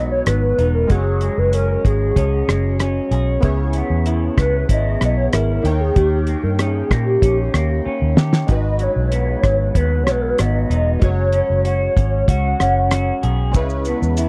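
Mellow and hazy, this short indie and bedroom pop excerpt moves at 95 BPM in a straight 4/4, set in G# minor with tuning slightly below standard pitch (A4 = 436 Hz). A hollow, woody clarinet-like synth lead carries the melody until 13.2 seconds, its soft square-and-triangle tone wrapped in ensemble chorus and tape echo. Beneath it, an electric guitar through a small old amp sounds twangy and slightly broken-up under lush chorus and vibrato, while analog keys with a detuned sawtooth edge and a filter sweep add chorus, phaser and cassette-tape colour. A foam-muted, round fingered electric bass sits up front, joined at 0.3 seconds by a cloth-damped, thuddy drum kit with a fat snare, tight kick, hi-hat, rim click and shaker, plus a drum fill at 7.9 seconds. The chords cycle through G#m7, F#sus2, C#m7 and D#7 in a dry, close 1970s-style studio sound touched by light reverb.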